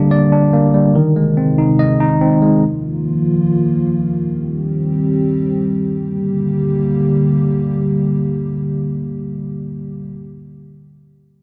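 A dark, warm production sits in a moderate digital room reverb that gives this short cut from a longer hip hop piece a shadowy, enclosed ambience. The tempo is 143 BPM in 4/4 with a half-time feel, and the music sits in G phrygian, tuned to A4 = 439 Hz, with a dark, tense mood. A clean tine electric piano, heard up front as if through its own built-in speakers, plays accompaniment only for the opening 2.7 seconds. Alongside it and continuing beyond it, a deep, moody analog pad holds sustained chords until 10.1 seconds, also up front. Its detuned square, sawtooth and triangle tones, sub octave, chorus and moving notch give it a thick, murky body, with a slow attack and long release. The harmony moves from Gm through Ab, Ebsus2 and Cm before returning to Gm as a new section begins at 6.0 seconds.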